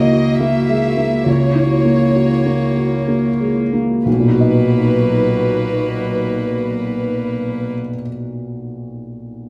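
A felt-muted upright piano sits up front in this tender, intimate neoclassical fragment for piano and strings, its mellow, vintage tone carrying audible action noise as it provides the accompaniment. A chamber violin section carries the melody with light vibrato, played sul tasto with a soft attack, while a single cello holds a second line that sounds pure and floating, set back at a distance. Beneath them, a very quiet hollow pad sustains chords with a flute-like, detuned, chorused colour and a slow attack. The music moves in a rubato three-beat metre and slows down over the opening 4.1 seconds, after which the harmony moves from F#7/C# onto Bmaj7. The strings and pad stop at 7.7 seconds, leaving the piano alone until 9.5 seconds, all within a moderate scoring-stage reverb in this excerpt of a longer piece.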